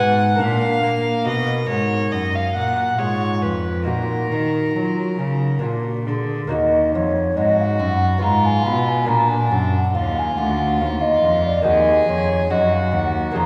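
A solemn, flowing baroque-style sonata movement in Eb minor at a slow 70 BPM in 3/4, this is cut from a longer piece and set in a church or concert hall with a lush scoring-stage reverb. A mellow, hollow wooden flute with vibrato and a crisp attack carries the melody from a distance, while a single gut-strung violin adds a rich, reedy second line with light vibrato. Underneath, a close, up-front period cello anchors the bass and a delicate fingerpicked lute with double strings fills in the accompaniment, all four playing throughout as the harmony moves through Bb, Fdim/Ab and Ebm.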